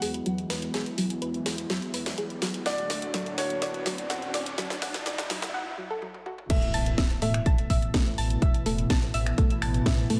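Lightly reverberant and carrying a faint mains hum, this uplifting, euphoric progressive house excerpt opens in a build-up where a smooth, warbling analog pad with subtle chorus and a soft, round arpeggiated pluck with digital delay both move through filter sweeps, pumping against a deep, evolving analog bass. A tape-saturated house kit with a cracking snare, finger snaps, hi-hat, toms and crash drives a drum fill, while a background riser climbs and an intimate, vintage grand piano with audible action noise plays a brief melody from 2.7 s. After a short break, the drop lands at 6.5 s with an impact and a punchy, up-front electronic kick entering.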